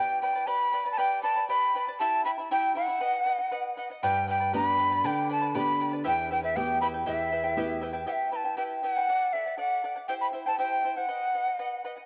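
A breathy, bright wooden quena with vibrato and a crisp, chiffy attack leads up front in this festive, earthy Andean folk excerpt in E minor at 119 BPM in 2/4, over a shimmering fingerpicked charango with double strings and a small fingerpicked nylon-string guitar that joins at 4.0 seconds and drops out at 8.1 seconds, all carrying the character of a home cassette recording bathed in lush hall reverb.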